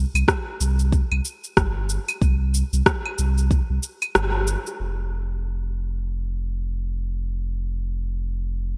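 Bright, 1980s-style digital production with light reverb frames this short cut from a longer organic downtempo piece, mystical and earthy, at 93 BPM in 4/4 with a swung 16th-note feel. A round, deep sine sub bass with tube saturation and sidechain pumping sustains up front from the start through 8.8 seconds. Tape-tinged electronic claves, cabasa and rim click enter first, joined moments later by a layered, deep electronic kick drum, before the percussion falls away by 4.8 seconds after a band accent at 4.2 seconds, leaving the bass alone for the second section.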